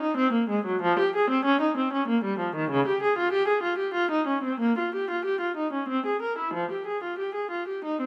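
In a flexible 3/4 at 95 BPM, with uneven beats and free rubato, this solemn, grave fragment of a baroque-style suite movement in F minor is played by a single unaccompanied viola, bowed throughout its 8.1 seconds. The viola has a dark, reedy gut-string tone in period style, with a smooth top, ranging from Db3 to Bb4. It sits up front in close, detailed sound, framed by moderate recital hall reverb.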